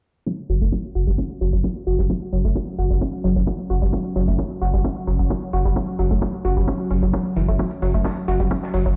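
A straight 4/4 pulse at 131 BPM drives this hypnotic, dark slice of peak-time techno, built on an overdriven, layered electronic kick up front, a thick, saturated sub bass pumping on F#1, and a faint electronic hi-hat tucked in the background. A bright, wave-folded analog pluck riff with chorus and tape echo sits on top, while a moody, slow-attack ambient pad drone enters at 1.8 seconds, and a compact cocktail drum kit with a dry, high-tuned snare and tambourine joins at 7.6 seconds. A filter sweep runs across the drums and the synth throughout, and the whole track sounds as if played on a big sound system in a bare stone room.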